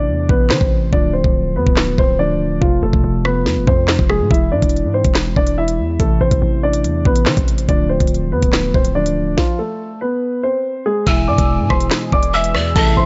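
Cold and tense, this half-time drill hip hop cut, taken from a longer piece, moves over a minor progression that circles from Am through Dm and F to E. A dark baby grand piano carries the melody up front, its intimate, vintage tone softened by a low-pass filter and dotted with audible action noise. Underneath, a mellow tine electric piano supplies clean accompaniment through a lush chorus, while a punchy, sine-based 808-style bass with a noise layer hits hard and decays. The electronic drill kit sits out front with a knocking kick, sharp snare, crisp hats, handclaps and rim clicks, opening on a break and dropping into a stop at 9.4 seconds. At 11.1 seconds a breathy bamboo pan flute enters with chiff, vibrato and delay, as a detuned sawtooth pad rises slowly in the background. The dry, close mix keeps its top end dull and subdued.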